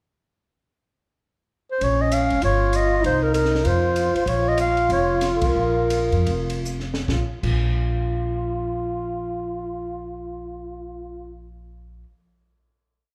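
A breathy, whispered subtone clarinet carries a motif-based melody with scooped notes and vibrato over a mellow trombone's long guide-tone line, a woody, thumpy pizzicato upright bass in two-feel and a dark, rolled-off cocktail drum kit playing a sticks ride pattern in this short, late-night small-group swing and bop piece in Bb minor at 137-197 BPM, which slows from 4.3 seconds, hits a band accent at 5.4 seconds and settles on a final chord at 7.1 seconds in a recital-hall reverb.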